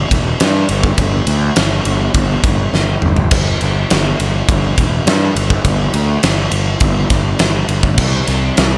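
A fuzzed, overdriven picked electric bass opens this heavy, aggressive metal passage at 103 BPM in a straight 4/4, ranging from E1 to G2, and a big acoustic rock kit joins at 0.1 s. The drums sit up front, with a punchy kick, fat snare, crash, ride, splash and toms ringing in a bright stone room, and a drum fill comes at 2.7 to 3.3 s. The bass is round, direct and amped, also placed up front, in a dry mix tuned to A4 = 438 Hz.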